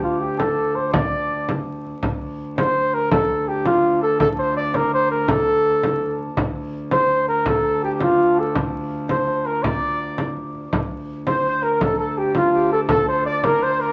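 A breathy flugelhorn carries the melody up front from the very start, playing in a jazz-inflected solo style over a bright, shimmering hammered dulcimer in the background and a rich, nasal viola da gamba drone on a low D, bowed by a single player with light vibrato and a biting, gut-string tone. Almost at once, at 0.4 seconds, a deep, close frame drum joins up front, struck with hard hands, giving this mysterious, driving medieval dance in D minor its pulse at 110 beats per minute in a straight 6/8. The dulcimer's ringing second line shares the horn's register, reaching a step higher at its top, while the fretted gamba adds a reedy, boxy period colour underneath. At 11.3 seconds a tenor recorder enters in the background with an airy, woody, expressive second line, tongued with audible chiff and vibrato. A wet studio reverb and a layer of vinyl crackle frame this short excerpt, tuned slightly low to A4 = 439 Hz and cut from a longer piece.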